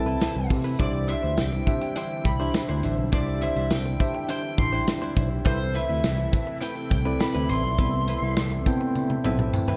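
Romantic and nostalgic, this 1980s-style pop excerpt moves at 103 BPM in a straight 4/4, opening on an Amadd9 chord. A lead guitar through a small cranked amp carries the melody with a lo-fi, overdriven edge, while soft, round synth keys with chorus play a mellow accompaniment beneath it. A barky, bell-like tine electric piano sits up front as the bass, and a thick, detuned unison pad holds sustained chords very quietly. A bright, direct-recorded clean guitar picks a riff from 0.1 seconds, coloured by subtle chorus and tape echo, and a jingly tambourine enters at 0.8 seconds, close and dry. The acoustic drum kit, with its tight kick and medium-tuned snare, comes in at 0.2 seconds and closes with a fill from 9.0 seconds, all set in a dark production with a lush hall reverb.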